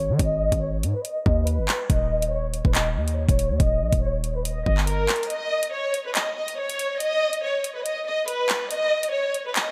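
Drill hip hop at 141 BPM in a half-time feel and G# harmonic minor, dark and ominous, where a lush, bowed violin section with vibrato carries the melody through a low-pass filter sweep and delay, a punchy, sine-heavy 808 bass with a noise layer sounds until 5.1 seconds, and an electronic drill kit of knocking kick, metallic hi-hats and handclaps enters at 0.2 seconds before its kick drops out at 5.3 seconds, all set in moderate plate reverb with bright 1980s-style digital production.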